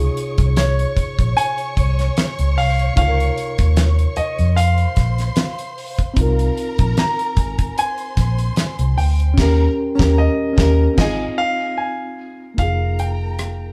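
A slow 75 BPM soul groove in 4/4 with a light swing on the sixteenths sits under this lush, romantic 1970s-style excerpt in Ab major, anchored by a round, foam-muted fingered electric bass and a damped drum kit with a fat snare, tight kick, rim clicks, hi-hat and dark crash cymbals. A clear concert grand piano carries the melody from 0.6 s over a reedy electric piano shimmering with fast tremolo and a softer bowed string section with vibrato and tape echo, while a faint, ringing vibraphone with slow motor vibrato joins at 5.4 s. The chords move from Dbmaj7 through Ab69, Eb7 and Ab6 to a closing Fm11, with a band accent from 9.4 to 12.6 s in a moderately reverberant room.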